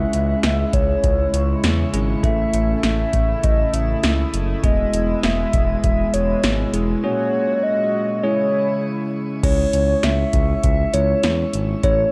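A hollow, woody synth lead carries the melody from the start over a bell-like tine electric piano, a shimmering pulse-width pad and a smooth synth bass, with the electro analog drum machine's deep kick, punchy snare and metallic hats up front in this nocturnal, cool synth-pop excerpt at 100 BPM in C# minor. The lead is soft and mellow with vibrato, chorus, tape echo and shimmer reverb, while the piano and pad also bathe in shimmer reverb as the chords move through C#m, A, E and F#add9. The pad stops at 9.4 seconds, leaving the other parts to carry the repeated section in a dark, moderately reverberant concert-hall sound.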